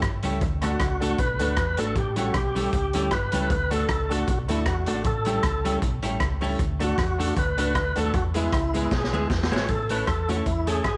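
Ska with a cheerful, upbeat lilt, cut from a longer piece, led by a full, lightly overdriven tonewheel organ melody with key click and a fast rotary speaker, sitting up front alongside a raw, gritty garage drum kit with a punchy kick and medium-tuned snare. Beneath them, a round, dark hollow-body bass, a compressed clean electric guitar with slapback echo, woody upright piano stabs and a grainy, very quiet cabasa fill out the groove over a light small-room ambience. A drum fill at 8.9 seconds leads into a brief new section at 9.7 seconds that lands on A.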